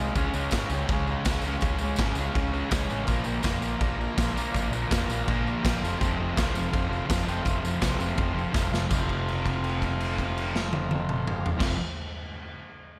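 A straight 4/4 beat from a raw, saturated garage drum kit with a punchy kick, ringing through a pumping stone room, carries this swaggering, rowdy garage rock excerpt, where a dark, double-tracked fuzz guitar riff sits up front over a round, amped picked electric bass, a reedy vintage combo organ holds sustained chords in the background with brief fills, a jingly tambourine rattles close behind until 9.1 s, and a drum fill at 8.5 s leads into a held note from 8.9 s.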